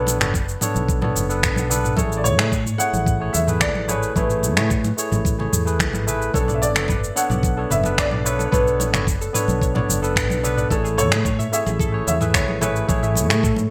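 Wistful and smooth, this sunset chillout excerpt moves at 110 BPM in B dorian over Bm9 and Amaj7 chords, with a dark, worn grand piano carrying the melody through lush chorus and delay, its boxy, intimate tone showing audible action noise. A barky tine electric piano through a combo amp supplies accompaniment with digital delay, while a bright fretless bass with lush chorus, a tape-warm smooth R&B kit with cabasa, finger snaps, toms and gated reverb, a knocking electronic kick, and vintage, band-limited congas in the background fill out the groove. At 6.3 seconds a soft, round synth pluck joins with arpeggios colored by chorus, cassette tape and digital delay, all set in a moderate plate reverb with bright 1980s-style digital production.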